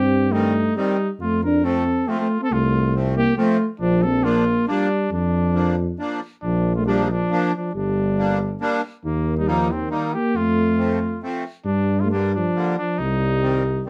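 A straight 3/4 dance pulse at 137 BPM drives this festive, bouncy alpine folk piece in Bb major, cut from a longer piece, where a dark, classical-style euphonium carries the melody over a mellow, up-front tuba bass with light vibrato, a warm trumpet with a soft attack and smooth top sings the second line, and a reedy, sweet accordion with light tremolo tuning and a boxy small-room sound joins the accompaniment at 0.3 s, heard in a moderate studio ambience as the chords move from Cm through F, Bb and Gm before returning to Cm.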